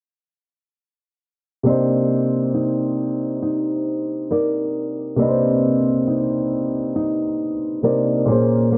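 A dry, gritty hardware recording with a low-pass filter, light reverb and a touch of studio ambience frames this short cut from a longer R&B piece in C minor, moving at a slow 68 BPM in a straight 4/4 with a longing, sensual mood. A warm concert grand piano with deep bass sits up front as accompaniment from 1.6 seconds, and a fingerpicked classical nylon-string guitar joins at 1.7 seconds with acoustic arpeggios coloured by tape echo. Both rest on a lingering Cm9 chord.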